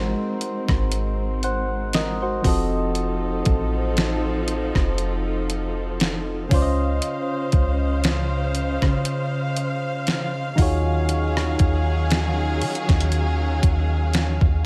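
Smooth and romantic, this contemporary R&B excerpt has a light swing, with mellow, round electric-piano-like synth keys treated with chorus and a lush, bowed string section holding sustained chords from the start. A deep, dark 808-style bass sits up front, and at 0.4 s a clean 12-bit drum machine joins with a thumpy kick, fat snare, rim click and hi-hat, its sampler-style sound tape-warm and re-recorded in a small room. The mix is dry, moving through rich chords such as Ab9, F7b9, Dbmaj7 and Ebm11.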